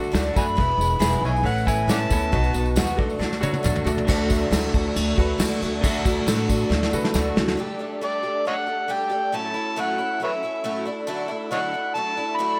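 A straight 4/4 pulse at 137 BPM drives this nostalgic, hopeful folk rock and heartland rock excerpt, cut from a longer piece. A soft brush drum kit sits up front with a dark, smooth sound, a punchy kick and short fills. Woody, growly upright bass, a close, dry tambourine and a picked twelve-string acoustic guitar, bright and shimmering with octave-doubled strings, fill out the groove. An electric guitar through a small old amp plays a slightly broken-up, lo-fi riff with subtle chorus. Further back sit a clear, intimate grand piano with audible action noise and a fat tonewheel organ with key click and a slow rotary speaker. An overdriven harmonica carries the melody, gritty and amplified, with light vibrato, scooped notes and tongue slaps in a jazz style. By 7.6 seconds the drums, bass, piano, electric guitar and tambourine have stopped, and the twelve-string and organ carry on through Gsus2, A6 and Dadd9, joined by the harmonica at 8.0 seconds, all in light small-room reverb.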